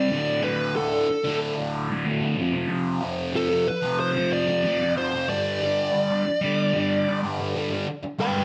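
A dark, fuzz-soaked lead guitar carries the melody from the opening moment, its picked, compressed tone sitting up front and given a quick slapback echo. Beneath it, a second fuzz guitar plays a low riff, brighter in color, double-tracked and colored by a phaser, and it is just as present in the mix. The rock passage moves in a straight 4/4 with a mysterious, brooding mood, shifting through D5, F5 and G5 power chords. Both guitars play together until 8.4 seconds, and the fragment is cut from a longer piece. A moderate echo-chamber reverb with a digital sheen surrounds the pair, adding a shadowy sense of space.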